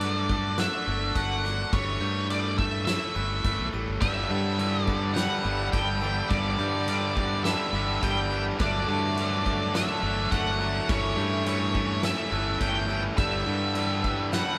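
Euphoric, soaring post-rock in G lydian at 105 BPM, cut from a longer piece, where a dark, fuzzy octave-fuzz lead guitar carries the melody up front over a punchy fingered bass, a roomy drum kit with a fat snare and dark cymbals in the background, a clean hollow-body guitar playing very quiet arpeggios, an overdriven guitar riff joined at 4.0 seconds by a second bright, distorted riff guitar, sparkling glockenspiel arpeggios, and a deep, detuned sawtooth pad holding very quiet chords, all moving through Dmaj7/G, A7/G and G6 as a band playing live in one room with moderate studio reverb.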